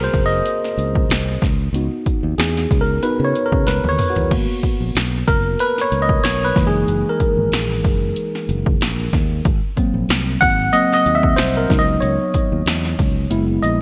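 Urban and bittersweet, this polished 1980s jazz-funk pop passage moves at 93 BPM in G# minor with a light sixteenth-note swing, cut from a longer piece and set in a lush hall reverb with bright digital-era production. A worn, slightly out-of-tune tine electric piano takes the solo up front through a combo amp, its clean tone bathed in lush chorus over extended harmonies such as G#9, C#7sus4 and F#13. A growly, amped fingered electric bass and a tape-warm analog drum machine with a punchy kick and snare, gated reverb, hi-hat, crash and toms support it, with a drum fill from 3.7 to 4.3 seconds.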